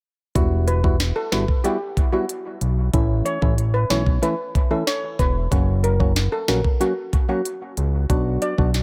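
At 0.4 seconds, this sultry, bouncy dancehall excerpt opens with a fat analog bass, an electronic afro-pop drum kit and a percussive organ stab arriving together at a straight 93 BPM in 4/4. The drums sit up front with a knocking kick, a sharp snare and smooth hats. The saturated, sawtooth-edged bass is thick and mellow, with a plucky filter on a fast attack that then sustains low under the groove. The dark, hollow organ stabs decay through chorus, pump against a sidechain and trail off into dub echo as the harmony moves from Emadd9 to A, F# and Bm. A bright, shimmering steel pan lead joins at 0.7 seconds, close-miked and struck with hard rubber sticks, its metallic melody also thrown into dub echo. The mix has little reverb and leans heavily on echo, and the cut ends at 8.8 seconds.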